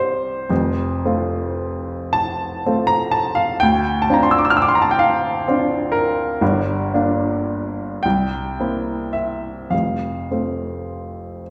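A 6/8 pulse, taken freely in rubato at roughly 34-44 BPM counted in dotted quarters, sets the pace for this brief passage from a longer romantic nocturne in F major. A solo baby grand piano carries everything, its tone warm and intimate, sitting present and up front, with the mechanical sounds of its action clearly audible. The playing spans the keyboard from F1 up to F6, giving the texture both deep grounding and airy height. Beneath the dreamy, serene mood, the harmony moves from C to F, then through Dm7 at 3.6 seconds, Gm7, and C7 before settling back on F at 9.7 seconds. A lush recital hall reverb surrounds the instrument, and the space is heard from further back in the room, lending the 11.5-second passage a softly glowing sense of distance around the close, detailed piano.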